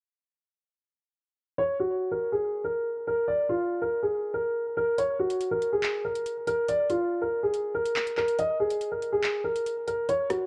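Ominous drill hip hop at 141 BPM in a half-time feel, cut from a longer piece, opens at 1.6 s with a dark, mellow grand piano melody between F4 and Eb5. The boxy, up-front piano is softened by a low-pass filter and trailed by delay. At 5.0 s an electronic drum kit of handclaps, metallic hi-hats and rim clicks enters lower in the mix, while worn cassette tape with warbly pitch drift and a light small-room reverb colour the whole recording.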